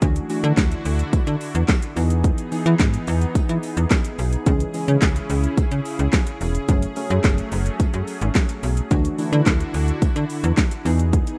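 A straight 4/4 groove at 108 BPM drives this energetic, confident dance-pop passage, cut from a longer piece and tuned to A4 = 443 Hz. Up front, an electronic, layered pop drum kit pairs a punchy kick and fat snare with metallic hi-hats, handclaps and shaker, all overdriven and re-recorded in a small room. Alongside it, a slap-like FM bass with a snappy, metallic fast attack and decaying notes pumps through sidechain compression. A lush, thick unison pad of detuned sawtooth and square waves holds bright sustained chords with slow attacks and long release, also pumping and treated with chorus, while a glassy, crystalline wavetable pluck sits mellow in the background with ring modulation, a filter sweep, a moving notch and its own chorus. A very quiet, jingly acoustic tambourine enters at 0.3 seconds, and the harmony moves through Dadd9, Emaj7, C#m and F#madd9 before returning to Dadd9 and Emaj7. 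The mix is dry with little reverb and has the rough feel of a home demo.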